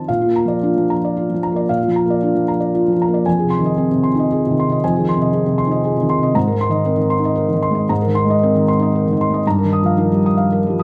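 In a 3/4 at 115 BPM, the time is played with a rubato feel that lets each bar breathe. This short passage of neoclassical minimalist piano, taken from a longer piece, carries a reflective, wistful mood. A felt-muted upright piano plays solo throughout the 10.8 seconds, ranging from F2 up to Eb6. Its tone is soft and mellow, with the thick felt giving it an intimate character, and the audible action noise places the listener close to the instrument, which sits up front. The harmony moves from Bb to Fm7 at 3.3 seconds, then through Abadd9 to Ebadd9/G, and light reverb gives the sense of a live performance in a single room.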